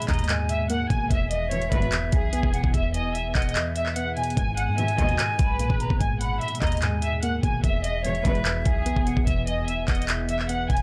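The knocking kick and metallic hats of an up-front trap drum kit drive this menacing, eerie hip hop cut, set in a half-time 4/4 groove, with handclaps and a vintage sampler grit on the drums; the kick drops out briefly from 3.6 to 4.4 seconds. A deep, boomy 808-style bass sits in the background from 0.1 seconds, its sine tone layered with noise and decaying after a fast attack. A distant, lush studio violin section carries the melody with vibrato and portamento under a low-pass filter, while a hollow, pure concert flute adds a tongued second line through analog delay. Soft, round electric-piano-like synth keys accompany with chorus and phaser, and a glassy, ethereal FM pad holds sustained chords behind them, moving between G#madd9 and E. Bowed symphonic string stabs land at 1.5, 4.8 and 8.0 seconds, and the whole fragment has a dry, gritty hardware sound with cassette tape character.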